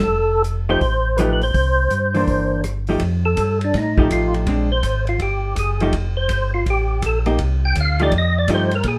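Soulful and greasy, this swung soul jazz organ trio excerpt at 164 BPM in F mixolydian sets a fat, percussive tonewheel organ melody with key click, chorus vibrato and slow rotary speaker over a round, dark organ bass line, joined at 0.4 s by a small-room soul drum kit with dark cymbals and a punchy kick and at 0.7 s by a clean, compressed hollow-body jazz guitar comping up front, before the organ takes a solo from 3.0 s over F9, Bb9 and Cm changes in a moderate studio reverb.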